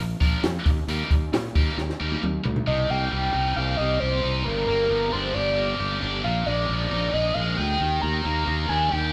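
A screaming, sawtooth-edged synth lead enters with the melody at 2.7 seconds, its gritty, guitar-like tone saturated and sustained, with chorus and vibrato adding a mellow shimmer. This cool, moody indie rock excerpt opens on a scooped, high-gain guitar riff that sits bright and up front, distorted and picked. A growly fuzz bass, fingered and overdriven, shares that forward position with a direct, amped bite. A compact cocktail drum kit plays only at the start, dry and natural with a high-tuned snare and punchy kick, closing its part with a fill from 1.8 seconds. The band sounds as if playing live in one large studio room, with moderate reverb under chords moving from Cm7 and Gm7 through Bb7sus4 to Ebmaj7.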